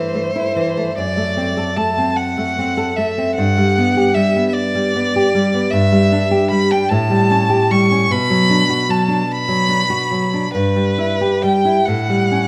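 A rich, smooth violin carries the melody from the first moment, a single bowed line with an even vibrato that sits up front and ranges into its upper register. Beneath it, a fingerpicked nylon-string guitar with fresh strings gives a classical accompaniment, its acoustic tone sitting just as close and reaching down into deep bass notes. This is a tender, warm romantic duo in 6/8, played with a free, rubato feel that lets the phrases breathe. The harmony drifts through gentle chords such as D7/F#, G, Em7/G and Bm before arriving at A7 near 11.9 seconds. A reverberant recital hall surrounds both players, and the passage, cut from a longer piece, runs for 12.5 seconds.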